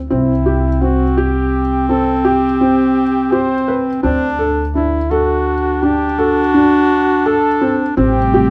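Hopeful and shimmering, this contemporary chamber piece moves in a straight 11/8 at 168 BPM counted in eighths. A warm flugelhorn carries the melody with light vibrato, beside an up-front, mellow classical clarinet line. A felt-muted upright piano adds intimate, boxy arpeggios with audible action noise, and a woody pizzicato upright bass plays underneath. The harmony moves through C5, D and Am7, and a warbling, detuned lo-fi pad with chorus slips in at 8.1 seconds, all set in a dark, warm recital-hall ambience.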